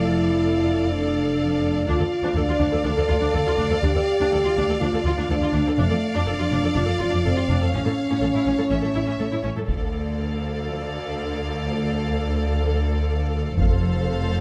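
Close, detailed microphones and a light reverb give this cut from a longer cinematic score an intimate, present sound. Set in D minor at 123 BPM in a straight 4/4, the heroic yet dark orchestral cue rests on lush bowed strings with vibrato: a focused violin section carries the melody, a second violin line with a soft attack and expressive tone moves beneath it, and an intense viola section fills in the accompaniment. Clear cellos and smooth, even double basses share the bass. A dark, distant French horn section holds sustained chords from a roomy space, sitting louder in the mix than the strings. The harmony moves through F6, Dm and A before a new passage opens at 9.7 seconds, when an up-front taiko ensemble played with heavy sticks enters, returning at 13.6 seconds as the chords arrive on F.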